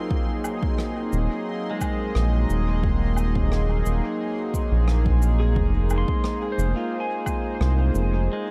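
Ambient dub at 88 BPM in Eb dorian, spacious and deep, this short section taken from a longer piece moves from Ebm to Fm over a smooth analog pad with chorus and a round, sawtooth-and-sine bass with ring modulation that enters at 1.1 seconds and sits up front. An overdriven, punchy electronic kick and a brushed woodblock, cabasa and rim click soaked in dub echo carry the groove, while a clean pedal steel guitar plays arpeggios through tape echo in the background. A bright, bubbling, resonant stepped-filter texture with chorus and built-in reverb drifts high behind everything in a dark, small-room production.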